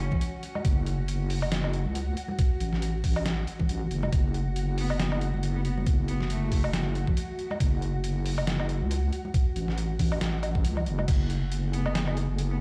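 A half-time 138 BPM groove with swung 16ths drives this heavy, brooding deep dubstep excerpt in F# minor, where a knocking, up-front electronic kick and a gritty, pitched-down sampler-style kit of snare, hi-hat, crash and woodblock sit alongside a saturated, square-and-sine wobble bass with chorus. Distant soft-handed congas echo, a cloudy, detuned granular pad sustains throughout, and a clear bowed cello with vibrato drifts in the background through dub echo and 12-bit grit. A flickering grainy texture arrives at 11.4 seconds, just after the F#m chord turns to F#madd9 at 11.1 seconds, all inside a stone-room reverb heard on a big sound system.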